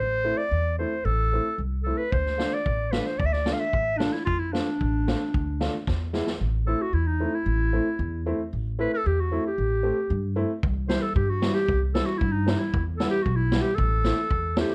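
A clear, classical-style clarinet sings the melody up front over thumpy pizzicato upright bass on gut strings in this festive, bittersweet klezmer passage at 113 BPM in 2/4, which moves from D minor into A dorian sharp 4. A woody upright piano with long sustain fills in the accompaniment. A boomy, rolled-off street-band kit of kick and snare joins at 2.1 seconds, falls away at 6.4 seconds after a short fill, and returns at 10.6 seconds, all under light reverb and a dark, warm production in this fragment cut from a longer piece.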